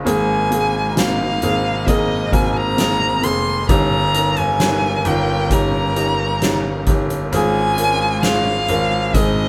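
Heartfelt and hopeful, this brief excerpt of a pop ballad moves at a slow 66 BPM in Db major, passing through Abadd9, Eb7/G and Db/Ab. An expressive, up-front solo violin carries the melody with vibrato and portamento, over a muted, mellow felt-damped upright piano with audible action noise, soft-attack sul tasto strings sitting smooth and intimate in the background, and a clear concert grand holding down deep, open bass notes. A soft-mallet drum kit with a fat snare and boomy kick adds natural, hall-like pulse, and the whole band sounds as if playing live together in one room under moderate studio reverb.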